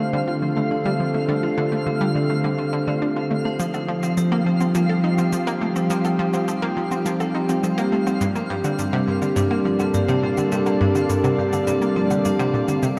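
Hypnotic and mysterious, this ambient, sequencer-driven space music excerpt moves at 104 BPM in a vast, echoing cathedral reverb, where a lush, warbling unison pad holds sustained chords from Dm7 through Fsus2 to Gmadd9, a metallic, ringing hard-mallet vibraphone fades in on delayed arpeggios, a round, detuned analog pluck with chorus and delay drives the riff up front, a twinkling granular texture adds octave-up shimmer on a high F5, and tape-warm electronic shaker and woodblock enter at 3.6 seconds.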